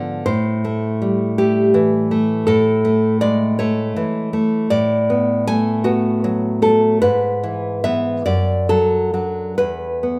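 A solo nylon-string guitar opens this short excerpt from a romantic classical guitar piece, its fingerpicked tone warm and fresh-stringed, with a deep classical body sitting up front in a moderate recital-hall reverb. In a rubato 6/8 at roughly 44-55 BPM in A major, the harmony moves from Am to A, then through Bm7/A, E/G#, and D/F# before settling on E5 near 9.6 seconds. The mood is sunny yet nostalgic, and the guitar spans from E2 up to G#5.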